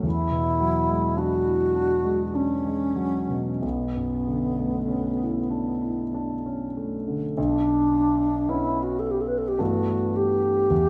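An alto flute with a pure, soft-attacked tone and vibrato carries the melody from the very start, over a dark concert grand piano whose deep bass, smooth sound and audible action noise give it an intimate, vintage character. This wistful, mysterious impressionist duo in B minor drifts in a rubato 3/4 at roughly 45-55 BPM, its harmony moving from E9 and Bm11 to Bmadd9 at 7.4 seconds and G69 near the close. A wet recital hall reverb surrounds the pair throughout this brief fragment of a longer piece.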